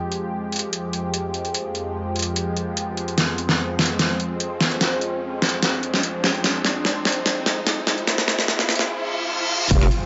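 Heavy wobble dubstep in F minor at 147 BPM with a half-time feel, this chaotic, menacing build-up is cut from a longer piece, led by a lush, detuned sawtooth pad holding an Fmadd9 chord with chorus, phaser and sidechain pumping under a filter sweep. An overdriven dubstep kit of deep snare, metallic hats, finger snaps and crash cymbal sits up front with a small-room character and plays a drum fill from 3.2 s, while electronic riser, reverse cymbal and impact effects stay in the background. At 9.7 s a saturated, square-wave wobble bass on F1 and a punchy electronic kick hit together with the impact, within a moderate plate reverb.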